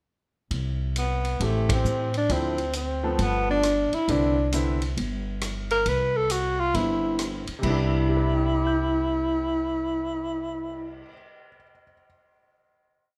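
A moderate large-studio reverb gives this short, complete jazz piece a roomy, relaxed glow in the small-group swing and bop style. The upright bass sits up front, plucked with a woody, growly thump in a two-feel, while a big-band drum kit, mid-forward and rolled off at the top, swings a stick-played ride cymbal pattern with hi-hat, rim clicks, a punchy kick, crash and a cymbal swell. A mellow tenor saxophone leads with a bebop-style theme, its smooth tone shaded by vibrato and scooped notes, and the band hits an accent together at 1.6 seconds. The grand piano, clear and intimate with its action noise audible, comps in syncopated drop-2 voicings through a progression of Am7, Dm9, G9 and Cmaj9. At 7.6 seconds the group settles onto a final chord, and the piano rings on alone until 12.0 seconds, closing the piece on a warm, easygoing note.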